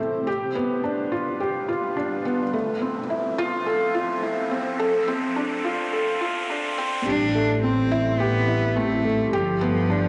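A felt-muted upright piano opens this moving, intimate piano and strings electronica excerpt with a soft riff up front, its action noise audible and its tone colored by cassette tape and tape echo, while a blurred, detuned granular pad holds sustained chords in the background. A filter sweep builds over G7, Fmaj7 and Dm7, and an electronic riser enters at 0.8 s. At the drop at 7.1 s, a clear, focused solo cello takes the bowed melody with vibrato over a dark, woody double bass section heard at a distance, the whole home cassette recording bathed in wet spring reverb and small-room ambience.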